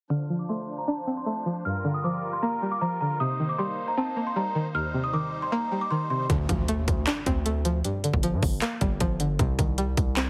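A distorted 808-style bass, heavy and saturated with a noisy edge, enters this dark, melancholic trap excerpt at 6.3 seconds alongside an up-front drum kit of hard-clipped kick, crisp hi-hats and handclaps. The piece moves at 155 BPM with a half-time feel in 4/4 and sits in D phrygian. It opens with a sparse, filtered passage: a worn, slightly out-of-tune celesta carries a sweet, bell-like melody in a high register, while a twangy, string-like resonator pluck with chorus supplies bright accompaniment and a reedy musette accordion shimmers in sustained chords. Here the harmony moves through Dm7, Gm7, Cm7 and Eb6. A filter sweep runs through this opening until the 6.3-second mark, when a very quiet electronic impact signals the shift into the denser section, and the celesta and accordion drop away. The pluck carries on to the end at 10.3 seconds over the drums and bass, following a progression of Dm7, Gm7 and Cm. 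The whole mix has light reverb and a heavily compressed, radio-like sound.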